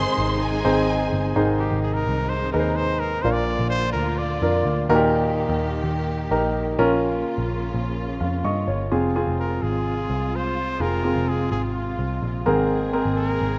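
A rough home demo mix with light reverb and a small-room ambience frames this hopeful, uplifting pop excerpt in Ab major, moving at 127 BPM in a straight 4/4. A clear, punchy trumpet carries the melody with vibrato, scooped notes and delay, returning at 9.4 seconds, while a distant, expressive violin section adds a brief delayed second line that ends at 1.3 seconds, over a polished, present baby grand piano that plays a fill at 8.2 seconds. Underneath, a dark, woody string section holds lush bowed chords sul tasto, and a round, foam-muted vintage electric bass sits up front.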